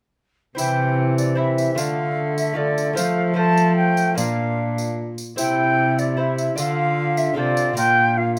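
A stately, festive renaissance-style consort dance in triple time, heard as a short cut from a longer piece, where an airy, expressive concert flute carries the melody with vibrato over a fingerpicked, delicate lute with double strings, a warm bassoon, a dark, gut-string cello bass and a jingly, close tambourine, all under light reverb as the chords move from C through Dm, F and Bb.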